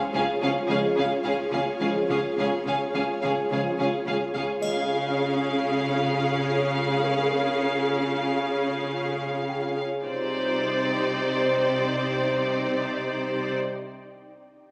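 A lush violin section carries the smooth, vibrato-rich melody of this ominous, mysterious suspense film cue at 110 BPM in 5/4, over dark, woody violas, rich cellos and double basses with portamento, while a distant second violin line and mellow French horns and trombones hold chords near the start, an ethereal, airy pad with ensemble chorus sustains beneath, a delicate, bell-like celesta glimmers very quietly until 10.1 s, a triangle sounds in the background from 4.6 s, and a wet scoring-stage reverb, captured by a phone in the room, surrounds it all as the harmony moves from Db to Cmadd9 at 10.1 s.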